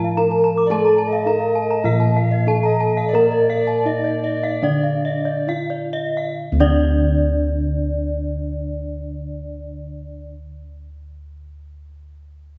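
A bronze metallophone carries the melody in this brilliant, hypnotic Balinese gamelan excerpt in D pelog, its padded disc mallets drawing a soft, mellow ring with shimmering beats from paired tuning. Bossed gongs sit up front in the bass, round and beating with a bright bloom, while a lower metallophone plays a quieter accompaniment. Two higher metallophones struck with horn mallets spin arpeggios, one of them adding an airy shimmer to its paired-tuning beats. A distant alto recorder with a woody chiff, vibrato and an unsteady tone adds a tongued second line from 0.7 to 5.5 seconds. The music moves in a straight 4/4 at 62 to 112 BPM and slows between 0.7 and 6.4 seconds, with a wet, church-like hall reverb surrounding the ensemble.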